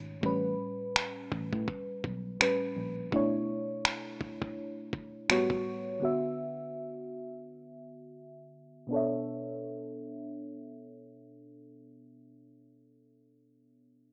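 A mellow FM electric piano and a muted, fingered electric bass open this moody, late-night contemporary R&B excerpt together, moving through lush chords such as A9, Bm11, A13 and D69 with a gently swung sixteenth-note feel. The piano sits up front with a soft, round tone and a faint noise layer; its quick attack fades away under chorus, phaser and a low-pass filter that sweeps across the opening stretch. The bass is dark and amped with a round, foam-muted tone, and it drops out at 3.1 seconds. A dusty, sampler-style soul kit of finger snaps and a thumpy kick comes in almost immediately, gritty and compressed, then falls silent at 5.6 seconds. The piano carries on alone until 14.1 seconds, set in light digital reverb within a rough home-demo mix that has a small-speaker sound.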